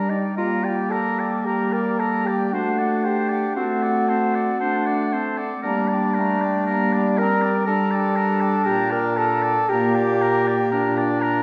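Heard from further back in a reverberant scoring stage, this elegiac classical fragment for wind quintet unfolds slowly in G minor, around 54-62 BPM in a rubato 3/4. A pure, vibrato-touched silver flute carries the melody from the background while a clear oboe sings a second line with light vibrato. An up-front French horn, a bright clarinet entering at 0.4 seconds, and a warm bassoon on the bass fill out the solemn harmony as it moves from G minor through D7 and back.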